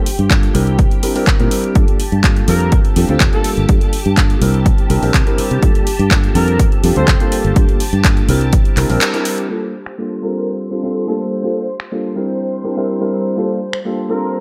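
Funky and sensual, this filtered disco house excerpt sets a dark, boxy grand piano and a swirling, bright phased string machine under sidechain pumping and low-pass filtering, while a punchy electronic kick, a house kit of snaps, claps and warm hats, and a round, foam-muted fingered bass drive the groove, the kick and bass falling away around a band accent at 9.0 seconds, followed by a filter sweep on the drums from 9.5 seconds, as a fat, brassy analog synth lead, entering at 2.5 seconds with chorus, cassette tape character and digital delay, sings over light digital ambience.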